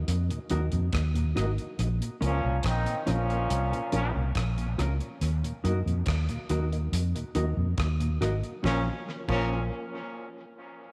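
Roots reggae at a relaxed 70 BPM in Bb minor, this short cut from a longer piece carries a meditative, serious mood, moving between Ebm and Bbm chords. A dark, foam-muted electric bass sits round and punchy at the front from the very start, anchoring the low end, while a dry, damped 70s drum kit with a fat snare, tight kick, rim clicks, hi-hat and crash adds a touch of tape echo. Tucked in the background, a mellow tonewheel organ colours the harmony with chorus vibrato and a slow rotary speaker, and a clean, compressed electric guitar adds fingered accompaniment treated with tremolo and dub echo. At 2.2 seconds a brilliant trombone section enters up front with a tight, vintage sound, a soft attack and light vibrato, its second line trailing dub echo. The whole mix sits in a moderate echo chamber reverb that gives the groove a spacious, roomy depth.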